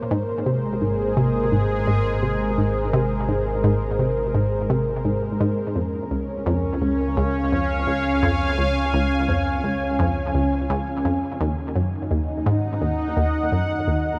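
Hypnotic and expansive, this sequencer-driven ambient space music excerpt moves at 85 BPM in Eb dorian, with a juicy, squelchy resonant blip pluck riff carrying chorus and tape echo over a full-bodied, evolving sweeping resonant pad with chorus and a round, deep analog bass, all bathed in a huge ambient reverb as a filter sweep runs on the arpeggio until 11.4 seconds, when the harmony moves from Abadd9 and Db to Ebm.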